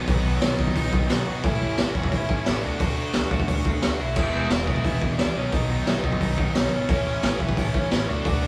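A gritty, saturated garage drum kit sits up front, its boomy kick, medium-tuned snare, hi-hat and crash sounding from a small room as this rowdy, rebellious punk rock excerpt charges along at 176 BPM in a straight 4/4. A bright, double-tracked stack guitar with overdrive and a dark, hollow-body semi-hollow guitar further back both pick out riffs over a woody, thumpy pizzicato upright bass on gut strings, while a smooth overdriven lead guitar carries the melody in the background. The whole band plays live in one room with light reverb, moving through B, A, D and E before returning to B at 5.4 seconds and A at 6.9 seconds.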